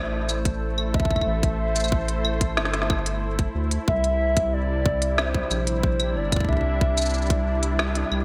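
A warbling, nostalgic lead, thick with lush chorus and digital delay, opens this glitchy, intricate IDM passage in A minor at 92 BPM, sounding together from the first moment with a smooth, detuned analog pad and a round, deep analog bass. The lead carries the melody between C5 and E5 with vibrato and a fast attack, while the vintage-toned pad holds slow-blooming chords beneath it, moving from Am7 to C7 at 3.9 seconds. The dark, up-front bass sustains low, giving the straight 4/4 groove its weight. An organic electronic drum kit enters at 0.3 seconds, with a woody snare, smooth hi-hats, claves and shaker dressed in gated reverb and delay, and a tight electronic kick joins at 0.5 seconds as the most forward element in the mix. The bright, 1980s-style digital production sits in light reverb. This short cut from a longer piece ends with the kick dropping out at 7.4 seconds and the lead stopping at 7.8 seconds, while the pad, bass and drum kit ring on briefly.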